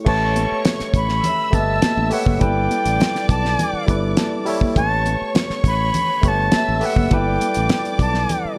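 This lush 1970s-style soul passage, cut from a longer piece, moves at a smooth, cinematic 102 BPM in a straight 4/4, alternating between A9 and G6/9 chords. A breathy, bright concert flute carries the melody up front with a tongued, straight tone that sounds slightly unsteady. A barky, clean tine electric piano played through a combo amp supplies the accompaniment and adds a fill from 3.9 to 4.8 seconds. A dark, woody studio violin section plays a lush second line from a distance, bowed sul tasto with vibrato. A modern fingered electric bass sounds punchy and direct, while a damped 70s drum kit sits up front with a fat snare, tight kick, hi-hat, crash cymbal and a rolled-off top, and high-tuned congas with thin skins, played with soft hands, enter at 0.4 seconds in the background of a live room. The production is dark and warm, with light reverb and a faint mains hum.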